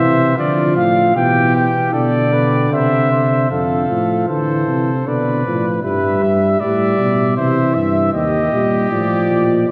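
Elegant and lively, this imitative classical brass canzona moves at 77 BPM in a straight 3/4, a fragment cut from a longer piece and bathed in a wet cathedral reverb with a 4.4-second decay. An up-front trumpet with a mellow tone, light vibrato and a soft attack carries the melody, while a second trumpet adds a lower line with its own gentle vibrato until 9.5 s. Beneath them, a dark, smooth-topped euphonium supplies accompaniment and a soft-attacked tuba anchors the bass, as the harmony opens on D minor, passes through a diminished chord and turns to E-flat at 8.1 s.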